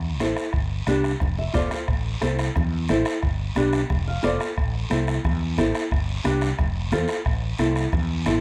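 A lightly reverberant mix puts a round, dark fretless electric bass and a fingerpicked classical nylon-string guitar up front in this passionate, fiery cumbia fragment in A minor, moving at a brisk 179 BPM in straight 4/4. The bass opens alone before the guitar, soft-beaten bombo, high-tuned congas and raspy, distant guiro enter at 0.2 seconds. The guitar adds short fills at 1.2 and 3.9 seconds over a cycling Am, G, F progression, while the dry, ringing congas sit in the background.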